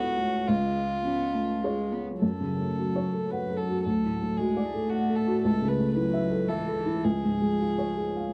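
In a rubato 3/4 that drifts between 102 and 115 BPM, this short neoclassical piece for piano and strings, cut from a longer work, sits in F# minor with a melancholic, longing mood. A felt-muted upright piano carries the accompaniment across its full span, its boxy, mellow, intimate tone placed up front and sounding noticeably louder than the strings. A single bowed violin takes the melody sul tasto, pure and floating with a soft attack. Beneath it a lone cello traces a second line, equally rich and seemingly distant. After an opening passage, the music moves into a new section at 2.2 seconds, where the harmony passes through F#m, D and A/C# before settling on C# at 7.0 seconds. The sound is that of a dry, close 1970s-style studio, touched by light reverb.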